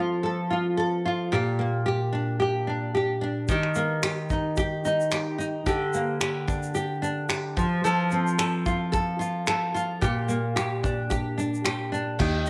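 Carefree and heartfelt, this acoustic pop fragment opens on a double-tracked, fingerpicked nylon-string guitar, woody and up front with the mellow give of old strings, moving through a lightly swung progression of F, Bb6 and Eb chords. At 3.5 seconds a cloth-damped, thuddy kit joins with a tight kick, dark cymbals, finger snaps and shaker, its rolled-off top sitting quietly in a small room. A round, foam-muted fingered electric bass arrives only at 12.2 seconds, all under a moderate plate reverb.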